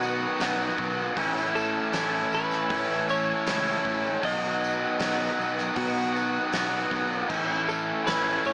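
A biting, up-front overdriven guitar riff with subtle chorus leads this hazy, dreamy shoegaze and dream pop excerpt at 78 BPM in A lydian, joined by a compressed overdriven guitar riff drenched in reverse reverb and underpinned by a direct fingered electric bass, a faint jingly tambourine and a background string machine's vintage sawtooth viola chords with ensemble chorus, while a gated 80s drum kit with a fat snare and tight kick enters at 0.4 seconds and a clean picked electric guitar melody with lush chorus and tape echo arrives at 1.6 seconds, all bathed in a huge ambient reverb with a small-speaker sound.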